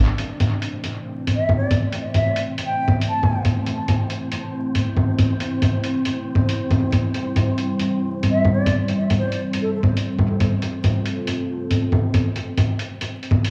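Swung 16ths at 138 BPM in 4/4 carry this nocturnal, wistful future garage excerpt in A minor, where muffled, pitched-down electronic hi-hat and bongos with tape echo sit up front over a deep, detuned analog pad with chorus moving from Am to C/G to Fadd9, a breathy wind-like tuned noise texture hovers in the background, and a hollow, pure concert flute with vibrato and analog delay sings briefly from 1.4 s and again at 8.3 s, set in an echo-heavy mix with vinyl crackle and small room ambience.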